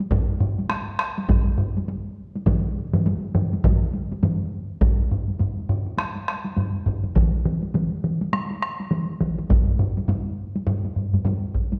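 A dark production places this taiko recording in a wet recital hall whose reverb rings for 1.4 seconds, cut from a longer piece. It is Japanese traditional drumming at 102 BPM in 4/4, with a 60% swing on the sixteenths that gives the driving, powerful groove a loping push. Two taiko ensembles played with hard sticks sit close and dry, one pressed up front and the other further back, while a solo taiko drum struck with heavy sticks is compressed and saturated for a thick, forward punch. A second solo taiko drum, also with heavy sticks and close up front, joins at 2.5 seconds and drops out at 9.4 seconds. The music moves into a new section at 4.8 seconds and carries on to the cut.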